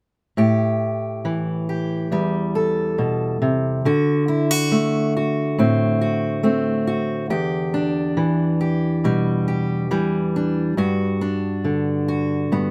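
Heartbroken and intimate, this short folk excerpt moves at a slow 69 BPM in a straight 4/4, set in A dorian. A lone fingerpicked steel-string acoustic guitar carries the accompaniment from 0.4 to 12.7 seconds, sitting up front with a warm tone and finger squeak audible under the close, detailed microphones. Its range spans from low E2 up to A4. The harmony drifts through Am7, D7 and Em7 before arriving at a thirdless Gmaj7 near 10.8 seconds. A light reverb gives the guitar a touch of air, keeping the sound personal and unadorned in this passage cut from a longer piece.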